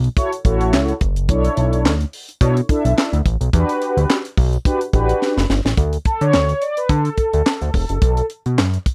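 A dry, close studio sound frames this danceable, late-night excerpt of early-eighties boogie funk at 107 BPM, with a light swing on the sixteenths. Up front, a fat, detuned analog bass with ring modulation and a filter sweep sits beside a tight acoustic drum kit of handclaps, hi-hat, kick and high-tuned snare, while brassy, round synth chords with chorus enter at 0.2 seconds over Dmaj9, Bm11 and Em9 harmony. After a drum fill, an analog polysynth solo joins the groove from 5.8 seconds as the chords shift to D5 and B5.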